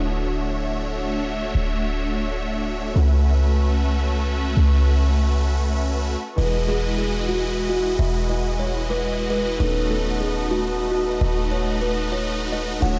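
Future bass at 149 BPM in a half-time feel, this lush, playful excerpt from a longer piece sits in a dreamy mix soaked in plate reverb, with huge, bright supersaw chords up front carrying the riff through a phaser, low-pass filter and delay, over a deep, boomy 808-style bass. A dark grand piano with subtle chorus and delay and an airy, breathy pad with slow attack and long release stay in the background as the harmony moves from Dmaj9 through A69/C# and Emaj9 to B7/D#. At 6.4 s a woody, hollow kalimba enters with a short, plucked melody touched by delay.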